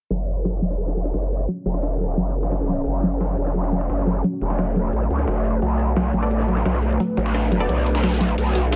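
Dark and mechanical, this short cut of technical drum and bass rides a growling, saturated bass that wobbles up front, while a detuned unison pluck spins delayed arpeggios and a moody sawtooth pad with chorus slides in at 1.5 seconds over a shift from F#m to Bm7. Gritty, pitched-up breakbeat drums with a high-tuned snare are joined by bright, overdriven electronic hats tucked in the background, and filter sweeps move across the pad and arpeggio. At 6.2 seconds a muted, very quiet filtered dub chord stab joins the dense, heavily limited mix.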